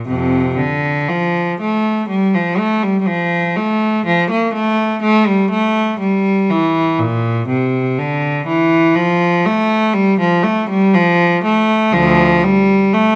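A single bowed cello opens at once and plays alone throughout this 13.2-second passage cut from a longer piece, a serene, dance-like, baroque-style suite movement at a rubato 61 BPM in 4/4. The cello's gut-string tone is rich and reedy, shaded with light vibrato in period style, and sits up front, ranging from D2 to Bb3. Close, detailed microphones and a light reverb give the solo performance an intimate, clear presence.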